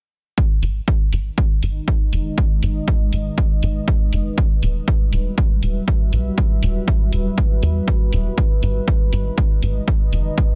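A melancholic, dramatic stretch of melodic techno, cut from a longer piece, opens with a punchy, layered electronic kick at 0.4 seconds, pushed up front. A tight, driving sequencer bass joins almost at once with electronic hi-hats, the bass a dark, plucky blend of sawtooth, square and triangle tones with a fast attack and short decay, a filter sweep running across it and sidechain pumping tying it to the beat. The hats carry a tape-softened sheen and their own sidechain pumping, sitting lower in the mix than the kick and bass. From 1.7 seconds a deep, moody pad of detuned unison sawtooth and sine layers with a sub octave fades in slowly and sustains long chords, coloured by chorus and its own reverb, and pumping against the kick. The harmony moves from G# minor to E minor add9 and back to G# minor, giving the short passage a brooding lift and return. The dense, heavily limited modern master keeps the room dry and close.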